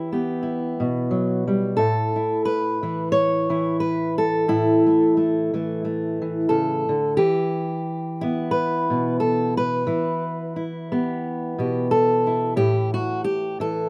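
A lightly swung 4/4 pulse at 89 BPM carries this short folk passage for solo fingerpicked steel-string acoustic guitar, cut from a longer piece and tuned slightly under standard pitch at A4 = 439 Hz. The guitar sits up front with a dark, auditorium-like body, ranging from A2 to C#5 as it moves through Em, Asus2, back to Em and onto A5 near 12.6 seconds. Recorded outdoors with light reverb, the mood is nostalgic yet hopeful.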